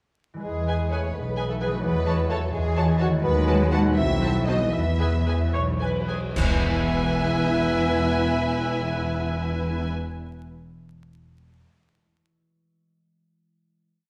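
Up front, a lush bowed double bass section anchors this playful, whimsical cinematic cue in 6/8, while violins carry the tune and a second violin line and violas add after-beat chords over a dark cello counter-melody with portamento. A mellow, distant bassoon, a dark French horn section doubling the tune in thirds, and a ringing concert harp rolling chords in the background fill out the texture, with the whole piece slowing from 2.5 seconds. Dark cymbal swells, crashes and bass drum strokes arrive at 3.2 seconds and punctuate a band accent at 6.4 seconds before a final chord rings into a reverberant hall under vinyl crackle.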